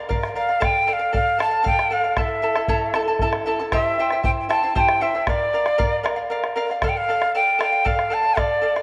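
A bright, reedy cane quena carries the wistful, melancholic melody up front, its airy tone marked by vibrato and a crisp chiff on each attack, in this short cut from a longer Andean folk piece in D minor, moving in a straight 6/8 at 77 BPM. Alongside it, a fingerpicked charango shimmers on its double strings, some of them octave-doubled. A deep, dark bombo enters at 0.1 seconds beneath chords that pass from Bb through Dm, A and C, and the recording sits in a wet echo chamber reverb with small room ambience.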